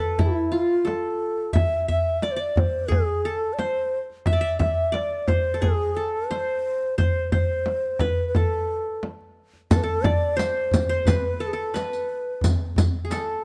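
A breathy, mellow ney carries a longing, soulful melody in A maqam nahawand, with vibrato and a crisp attack up front, while a bright qanun played with fingerpicks traces a second line alongside it at an unhurried 88 BPM in straight 4/4. A deep clay-shell darbuka, compressed and saturated, joins with a close, dry frame drum played with soft hands almost at once. At 9.7 seconds the music moves into a new section as a distant riq adds bright jingles, all within light reverb and detailed close microphones, in this passage cut from a longer piece.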